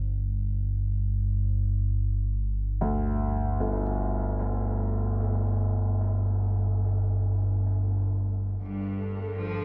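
A deep, rumbling, wave-folded drone sits up front through this vast, ominous dark ambient fragment in free time, beneath a worn, mellow grand piano playing low arpeggios through tape echo, until at 8.6 seconds the harmony moves from G5 to Gsus2 as a biting, vibrato-rich cello section enters with sustained chords and a grainy, flickering texture joins at 8.8 seconds, the whole set inside a huge, wet reverb.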